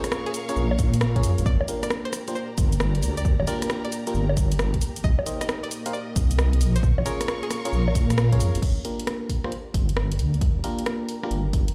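UK garage two-step clip with a soulful, bouncy swing, where a deep, wobbling detuned bass sits up front from 0.6 s under glassy FM electric piano stabs, a twangy resonator pluck melody with 12-bit grit and delay until 8.6 s, an ethereal pad pumping in the background, lush bowed dark strings, punchy tape-warm drum machine with bongos, cabasa, hi-hat, rim clicks and crash, and an analog kick from 0.8 s, all over Bbm7, Gm7 and Cm7 chords in a large studio reverb.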